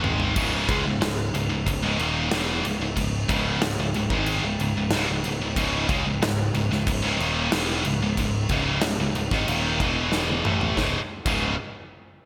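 A straight, steady 4/4 pulse drives this aggressive, epic heavy metal excerpt, which is cut from a longer piece and opens with a short drum fill. The big acoustic rock kit sits up front in a roomy sound, with a punchy kick, a medium-tuned snare, toms and glittering crash cymbals. A double-tracked, high-gain electric guitar carries the picked, heavily distorted riff up front with a bright edge, while a growling picked electric bass, overdriven and blending direct and amped tones, anchors the low end. The riff holds a C# minor chord before moving through E5 and A5 power chords, and a second drum fill at 10.1 seconds leads into a brief new section on C#5 at 10.8 seconds. A lush hall reverb and gleaming 1980s-style digital production give the sound an arena-sized sheen.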